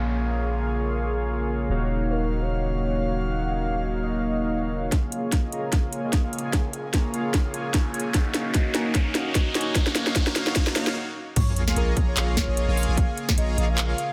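A lush, bittersweet future bass excerpt at 149 BPM in a swung half-time feel opens with an airy, breathy pad holding chorused, pumping chords under a soft, detuned supersaw riff colored by cassette tape, a low-pass filter and tape echo, while a deep, mellow sine 808 bass sustains beneath and, from 1.7 seconds, a velvety, vibrato-tinged synth lead sings in the background with delay. At 4.9 seconds an up-front electronic kick and a trap kit with sharp snare, metallic hats, handclaps and crash drive a build-up with a drum fill, a filter sweep on the supersaw and a riser, before a brief stop at 11.0 seconds. The drop lands at 11.4 seconds with an impact and sub drop, the 808 and lead returning over Bbm7 harmony in light reverb.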